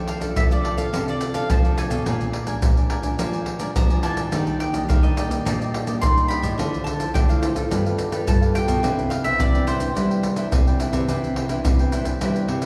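Festive and lively, this samba and choro excerpt at 106 BPM in C major sets a picked, double-string bowl-back mandolin melody over a mellow, crisp cavaquinho, a fingerpicked classical nylon-string guitar, a dark, small nylon-string guitar bass line, and an up-front, vintage, band-limited percussion blend of pandeiro, maracas and deep surdo entering at 0.1 seconds, all bathed in the long reverb of a church or concert hall as the chords move from F6 through Bb7 and Ebmaj7 to settle on Cmaj9.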